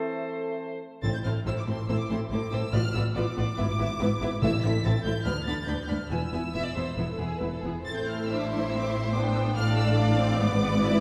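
A high, focused violin section carries the melody of this dramatic, stormy classical-period movement for symphony orchestra, cut from a longer piece and played in quick 4/4 with a rubato feel. It opens with a brief wind chord: a clear oboe, a roomy clarinet, a very quiet, airy silver flute, a bassoon with light vibrato and a mellow French horn section holding sustained chords. The strings enter at 1.0 s and carry on to the close at 11.0 s, with a second violin line that is expressive and close, sliding between notes with portamento. A lush viola section with a soft attack fills the accompaniment, while a cello section, also using portamento, joins a rich double bass section on the bass line. Timpani struck with hard mallets sound articulate and dry until 5.0 s, and the harmony moves through minor chords and tense dominant sevenths. A scoring stage reverb places the listener further back in the hall.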